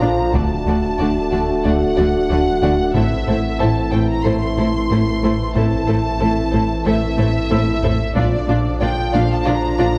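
A straight four-beat pulse drives this tense, brooding stretch of hybrid orchestral and electronic film score, where a very quiet, compressed and saturated taiko ensemble struck with hard sticks enters at 0.3 seconds and plays a fill from 7.2 seconds before stopping at 8.8 seconds, beneath a bowed violin section carrying a smooth, lightly vibrato melody over a second, softer violin line, lush violas, a very quiet cello section and double bass section, a dark French horn section and tight trombone section holding sustained chords, a rubbery, hollow square bass riff with ring modulation, a deep, clean sine sub bass, and a brilliant baby grand piano texture in the background with digital delay, all moving from D to A minor to B-flat inside a wet concert hall reverb.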